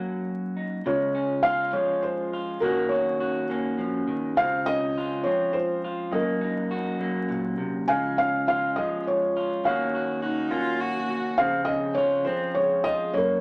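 A slightly broken-up electric guitar through a small old amp opens this intimate, nostalgic acoustic folk-pop ballad in 3/4 at 103 BPM, with a vibraphone's ringing soft-mallet arpeggios and slow motor vibrato joining from the background at 0.8 seconds. The felt-muted upright piano carries the mellow, vintage melody up front over gentle Db major harmony moving through Dbmaj7, Ebm7 and Gb6, and a single bowed cello with an airy bow and light vibrato adds a brief, close second line at 10.2 seconds. Wet studio reverb and vinyl crackle give this excerpt from a longer piece a hazy, old-record glow.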